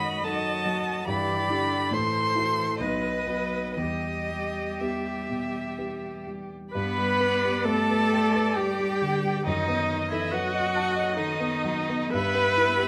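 In a rubato 3/4 that drifts between 57 and 72 BPM, this slow romantic movement for piano quintet unfolds in E minor with a melancholic, elegiac cast, cut from a longer piece. The first violin carries the melody high above the ensemble, its sound rich and expressive with vibrato and portamento, up front yet touched with a distant quality. Beneath it, a second violin and the cello trace smooth, even second lines, both bowed with vibrato, while the viola adds focused accompaniment and the dark concert grand piano, mellow with deep bass and short sustain, sits up front spanning from low bass into the treble. The harmony moves from a diminished opening through Em and a half-diminished chord to B and back to Em, then the second section at 6.7 seconds shifts to G and passes through B7 before settling on Em/G at 12.1 seconds. All five players sound throughout, set in a large studio with moderate reverb.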